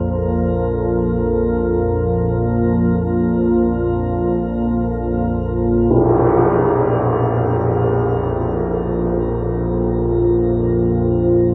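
Ominous and desolate, this dark ambient drone, cut from a longer piece, rests on a deep, moody pad of detuned sawtooth and sine tones with a moving notch, chorus and shimmer reverb, over a low, nasal organ-like drone thickened by ensemble chorus. A very quiet, metallic bronze singing bowl rings with slow beating through the opening until 5.9 s, when a single bright tam-tam hit sounds close and up front. The whole is bathed in a huge, wet ambient reverb.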